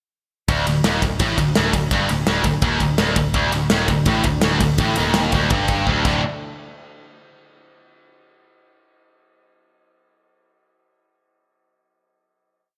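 At 0.5 seconds, two up-front electric guitars crash in together on a single-note heavy metal riff, one scooped and high-gain, the other tighter, both bright, picked and distorted. A growly, punchy electric bass drives eighth notes beneath them, doubling the guitar riff with a foam-muted, direct tone. An acoustic studio kit with a tight kick, a medium-tuned snare, crash and ride cymbals, and gated reverb supplies a big rock groove that sits forward in the mix. At 3.4 seconds, a shimmering, retro pulse-width pad fades in softly in the background, holding mellow chorused chords with a slow attack and long release. A short drum fill leads into a final hit at 6.2 seconds that rings out under a plate reverb, closing this heavy, epic whole piece with a crisp 1980s-style digital sheen.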